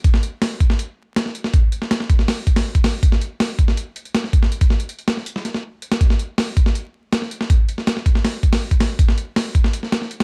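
Vinyl crackle sits over a dry, close sound with little reverb, giving this short cut from a longer piece a raw, nostalgic character. It is drum and bass at 161 BPM in a straight 4/4, and the only part is a breakbeat drum kit that plays from start to finish across its roughly 10.2 seconds. The kit has a sampler-style, compressed quality at natural pitch, with a gritty edge and a tape-warm color, as if re-recorded in a small room. A thumpy kick, a medium-tuned snare and hi-hat make up the pattern, and the drums sit up front in the mix. The whole passage stays in a single section, keeping its focus on the gritty break.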